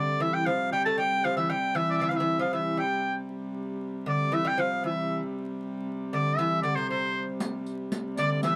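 This rustic, festive medieval dance moves in a straight two-beat metre, taken from a longer piece. A clear shawm carries the melody up front, its folk-style vibrato sounding distant and roomy. Beneath it, a fingerpicked lute plays a delicate second line on doubled gut strings with some octave-doubled courses, while a dark, woody wheel-bowed hurdy-gurdy holds a steady drone. A riq with vintage, band-limited jingles joins at 7.4 seconds, and a second shawm with a smooth top slips in quietly in the background at 8.2 seconds. Close, detailed miking, light reverb and a layer of vinyl crackle give the recording an intimate, old-record character.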